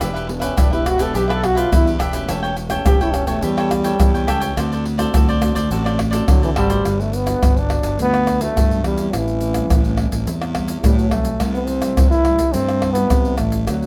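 Playful and festive, this samba and choro excerpt puts a breathy, lightly vibrato-touched trombone up front, soloing through the first 6.8 seconds over crisp, picked cavaquinho that drops out at that point, a classical thumb-plucked nylon-string guitar in the background, a dark, punchy fuzz-overdriven fingered electric bass, and close, dry egg shaker, deep surdo, pandeiro and tamborim struck with hard hands, the whole band playing live in a moderate stone room.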